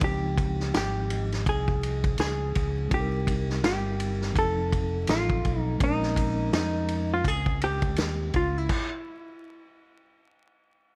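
A smoky, nocturnal jazz-hop excerpt at 83 BPM with a lazy 16th-note swing opens on a dark, clean hollow-body jazz guitar melody up front, a mellow tine electric piano sitting in the background, a round fretless bass and a punchy vintage drum kit with dark cymbals over Dbmaj9#11, Cm7, F7 and Bbm9 amid vinyl crackle and small room ambience, until the band stops between 8.7 and 8.9 seconds and the guitar carries on alone to 10.9 seconds.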